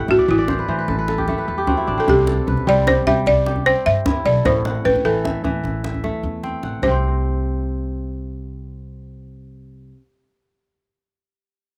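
Dry and close, recorded in the open air, this hypnotic West African piece at 101 BPM in 12/8 sets a buzzing, woody balafon melody struck with hard rubber mallets up front over ringing, crisp fingerpicked kora arpeggios that open with a fill, a bright pizzicato upright bass on steel strings moving between Am and C, and a deep, hard-handed djembe that plays a fill before stopping at 7.0 s as the harmony drops away for the closing section.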